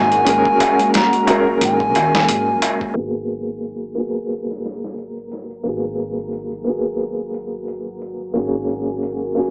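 A dry, gritty sound with cassette tape character, a low-pass tilt and a small-speaker boxiness frames this brooding, hypnotic trip hop excerpt at 89 BPM in G# minor, with a swung 16th-note feel. A bright, reedy baroque flute carries the melody up close with airy vibrato and tape echo, sounding only until 2.6 seconds, while a distant clay-shell darbuka struck with hard hands adds deep percussion until 2.9 seconds. Throughout, a dark, mellow upright piano with tremolo plays the accompaniment, over a moody detuned analog pad whose slow-attack chords shimmer with chorus. A woody pizzicato upright bass with transformer saturation anchors the low end. A dusty, overdriven sampler-style kit, with a thumpy kick and a medium-tuned snare re-recorded in a small room, drives the groove as the harmony moves from F#add9/G# to G#m9, where a filter sweep begins at 3.0 seconds and carries through the rest.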